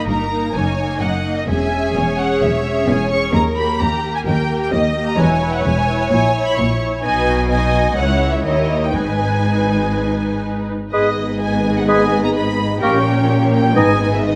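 Classical orchestral music, a fast romantic movement in G# minor at 128 BPM in 4/4, played with rubato and an urgent, dramatic mood, cut from a longer piece. The strings carry the whole passage: a lush, warm violin section sings the melody high above a second violin line, while a clear, focused viola section supplies accompaniment and rich, bowed cellos and double basses anchor the bass with vibrato. The harmony moves restlessly through chords such as D#m/F#, C#m/E, A#dim and G#m/B before settling on G#m at 8.9 seconds. At 10.9 seconds the opening material returns with woodwinds and horns added: a hollow, pure flute, a present oboe and a soft-attacked clarinet trace background lines, a punchy bassoon joins the accompaniment, and a mellow French horn section holds sustained chords. A Gdim/Bb chord resolves back to G#m near the close, all set in a moderate scoring-stage reverb that gives the ensemble a sense of depth.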